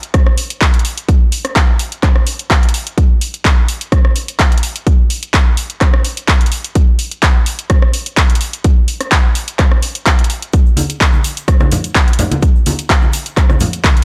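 The rhythm is a steady house groove at 127 BPM in 4/4, with a light 53% swing on the 16ths giving it a feel-good, joyful bounce. An electronic kick drum sits up front, layered, punchy and overdriven, re-recorded in a large room for added weight. Alongside it, a house drum kit supplies handclaps, hi-hat and rim click from the start, its sound also layered and driven hard, with sidechain pumping on the hats. At 10.5 seconds an egg shaker and congas join, acoustic and ringing, played with hard hands in a small room, their pumping adding lift to the closing stretch. The whole recording is dry and gritty with little reverb, a short cut from a longer piece.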